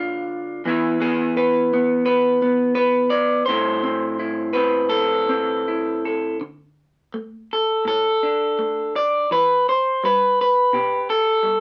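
A moderate studio reverb gives this short cut from a longer folk piece the feel of a live room, with an electric guitar through a small old amp sitting up front, its picked tone bright, twangy, lo-fi and slightly broken-up. Played solo with a free, rubato feel, the guitar moves from D minor through E to A minor before shifting at 6.4 seconds to a D5 and then E minor. The mood is intimate and haunting.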